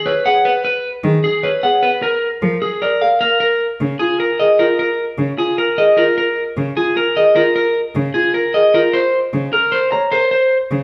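A picked electric guitar opens this fragment of a longer piece of minimalist classical pattern music, its dark tone sitting at the edge of break-up and placed up front as it carries the melody. A grand piano with a mellow, boxy sound joins almost at once with arpeggios, and a single bowed cello, clear and focused with vibrato, enters at 1.0 s to supply the accompaniment and also stands up front. The pulse runs at 304 eighths per minute in a straight 7/8, giving the music an urgent yet meditative feel. The harmony moves from G#m7 to A#, then shifts at 3.4 s into a second section built on a rootless Ebsus4 before settling on a rootless Gb. A wet, large studio reverb with a 1.3-second decay surrounds the whole ensemble.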